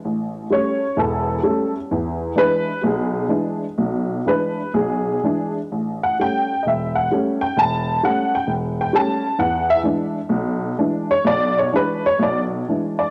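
Swung eighths at 128 BPM in 4/4, loosened by rubato, carry this relaxed, sophisticated solo jazz fragment in E mixolydian, where a detuned, jangly honky-tonk upright piano sits up front with a woody, vintage character, moving between A7 and E7 across a span from E1 to A5 for 13.1 seconds of a longer piece, framed by light reverb and the sound of a home cassette recording.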